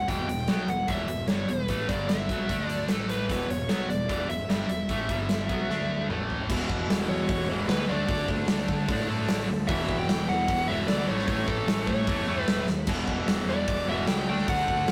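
A huge, punchy arena drum kit with a pumping hall sound drives this heavy, menacing hard rock passage, alongside a growly fuzz bass and a bright, double-tracked distorted guitar riff, while a dark, bluesy lead guitar carries the melody; from 6.5 seconds a very quiet second riff guitar and a barely audible gritty tonewheel organ with slow rotary speaker join, captured in a rough rehearsal-room recording with light reverb and saturation.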